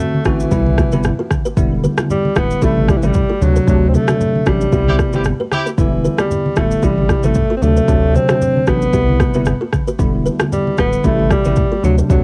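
Afrobeats at 114 BPM in A minor, sultry and mellow, cut from a longer piece with a lilting 16th-note swing, built on a home cassette recording where a breathy, up-front alto saxophone carries the melody through tape echo and plate reverb over a bell-like tine electric piano thickened by ensemble chorus and cassette tape. A deep-kicked electronic afro-pop kit with rim click and shaker sits up front, joined by low-tuned congas in the background, a very quiet woody kalimba riff and a thick, saturated sub bass. The chords cycle through D7, Cmaj7, Em7 and Am7, and a punchy horn section adds a brief second line from 4.9 to 5.7 seconds within a band accent.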